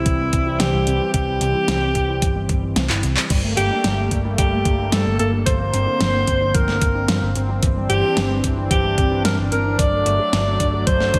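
Nocturnal and nostalgic, this synthwave excerpt moves at 111 BPM in G dorian, with a clear, distant alto saxophone carrying a vibrato-laced, jazz-style solo up front through digital delay and slapback echo. Beneath it, a smooth, detuned sawtooth pad holds sustained chords with chorus and sidechain pumping, while a warbling, lo-fi pluck with a noise layer and filter sweep spins arpeggios in the background, and a dark, round hollow-body electric bass also carries sidechain pumping. From 0.1 seconds, a thumpy sampler-style kick and an overdriven pop kit with a fat snare, metallic hats, handclaps and crash drive the track in a big arena reverb; a drum fill at 2.9 seconds leads into the second section at 3.3 seconds, where the harmony moves from Gmadd9 through Bbadd9/G and Cadd9/G to D/G.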